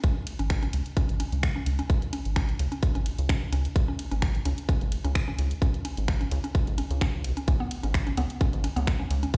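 A tight, up-front electronic kick drives this short cut from a longer minimal techno track, sounding from the first moment together with a rubbery square bass and a garage kit of finger snaps, hi-hat and ride cymbal. The mood is cool and quirky, with a gentle swing on the sixteenths giving the groove a slight lilt. The bass sits dark and bouncy at the front, its nasal, hollow tone shaped by a resonant filter pluck and a moving notch, and it pumps against the kick. Further back, a woody, round mallet-like synth pluck repeats a small riff over a C#5 chord, softened by chorus and trailed by tape echo while also breathing with sidechain pumping. The whole 9.4 seconds sounds as if played on a big sound system in a bare stone room.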